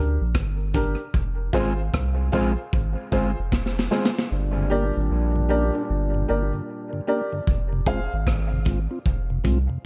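A worn, woody upright piano with audible action noise drops dark stabs through dub echo, riding over a round, deep sub bass and a gritty, saturated breakbeat kit with a punchy kick, all set in a small, spacious room. This dub reggae excerpt has a deep, swung feel and moves between Gm and Fm. A clean, fingered electric guitar adds echoed accompaniment from 1.5 s, then a punchy trombone section carries a second line from 4.3 s, and a flute-like tonewheel organ with key click joins at 4.6 s to fill out the texture.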